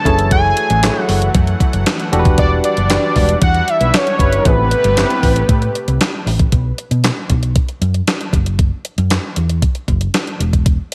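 A fat, warbling vintage analog lead with tape echo carries the melody up front in this slick, danceable early-eighties boogie funk at 116 BPM. It is joined by a barky tine electric piano through a combo amp, a smooth, detuned sawtooth pad with chorus and tremolo in the background, and brief brassy synth lines with vibrato, over F#m9, Em9 and Am9 chords. Underneath, a round, dark hollow-body fingered bass and a thumpy, sampler-style 12-bit drum machine with handclaps, hi-hat, fat snare and gated reverb sit up front in a digital ambience. Once the lead drops out at 6.0 s and the pad at 6.5 s, bass and drums carry on alone over B5 and Esus2/F#, until the bass stops at 10.8 s and the drums at 10.9 s.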